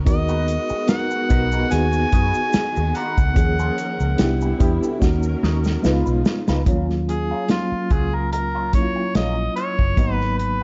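A mellow harmonica with scooped notes sits up front in this smooth, silky 1970s-style soul groove at 73 BPM in Eb minor, carried by a reedy electric piano with fast tremolo, a round, foam-muted electric bass and a punchy acoustic drum kit whose fill at 5.0 s leads into the harmonica solo at 6.7 s, while a slightly broken-up guitar riff with wah and subtle chorus sits in the background, and distant bowed strings and a grainy tube shaker drop out at 6.7 s, within a dark, small-room production.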